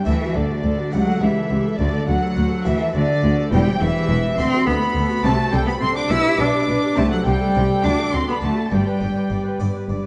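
A rich, focused solo cello sings the melody up front in this brilliant, festive baroque-style concerto excerpt in a straight 6/8 at 69 BPM (dotted quarters). It is doubled high above by a lush, distant violin section with a soft attack and portamento, and joined by a woody second violin line in the background. A close-miked, round harpsichord, a smooth, even viola section, a background cello section and a dark double bass section fill out the accompaniment and bass, all set in a dark, reverberant concert hall.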